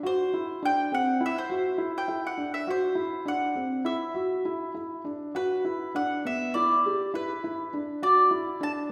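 A soft, felt-muted upright piano opens this brief contemporary instrumental fragment with intimate, mellow arpeggios on Cadd9, joined at 0.1 s by a woody, acoustic mandolin picking the melody on double strings above it, both parts sitting up front within the wet reverb of a scoring stage heard from further back, as the shimmering, restless music moves in 9/8 at 204 BPM in straight eighths and shifts to a rootless G6 at 5.3 s before breaking off at 8.9 s.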